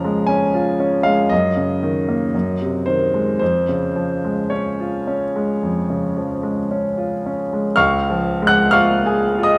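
A clear, natural, up-front grand piano plays alone through this 9.6-second fragment of a tender, nostalgic romantic nocturne in Db major, unfolding in a rubato 4/4 at 54-62 BPM and ranging from Db2 to Gb6 as the harmony moves from Db/F through Ebm7/Gb and Ab7/Gb back to Db/F before settling on Db at 7.7 seconds, all set in a recital hall with moderate reverb.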